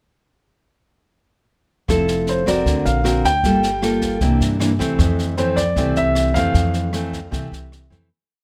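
Bossa nova in F major at 155 BPM, romantic and breezy, built on a fingerpicked nylon-string guitar that sits up front with thumb bass, syncopated plucked chords and audible finger squeak, joined by a woody pizzicato upright bass playing dotted root-and-fifth lines and a brushed jazz kit with a high-tuned snare, punchy kick and rim clicks. A concert grand piano enters at 2.3 seconds with a motif-based, song-like melody in its upper register while the chords move from Fmaj7 through D7alt, Gm9 and C9 back to Fmaj7. The sound is close, detailed and nearly dry, and the whole short piece fades out from 6.5 seconds to its end at 8.1 seconds.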